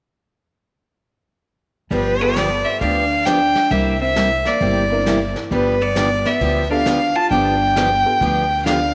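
A clear, smoothly bowed fiddle with light vibrato carries the melody up front in this cheerful country and western swing excerpt at 133 BPM, swinging in G mixolydian over G9 and C9 chords. A dark, clean hollow-body electric guitar with tape echo plays a second line, while a bright picked steel-string acoustic guitar with audible finger squeak, a woody, thumpy pizzicato upright bass and a brushed drum kit with a punchy kick in the background start together at 1.9 seconds. A jangly, detuned honky-tonk upright piano joins in the background at 2.2 seconds, and the band sits in a wet echo chamber.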